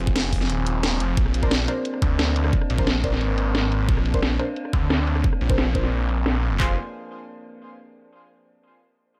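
Aggressive and tense, this dark technical drum and bass fragment sets a snarling, growling detuned saw bass against an eerie, warbling metallic FM drone with chorus and sidechain pumping, while two overdriven kits in a small room deliver a knocking kick with handclaps and an up-front cracking snare, rim clicks and bright hats, and from 1.4 seconds a nasal, band-passed chord stab with phaser and tape echo joins amid filter sweeps on the drums and stab, all in a fairly dry mix.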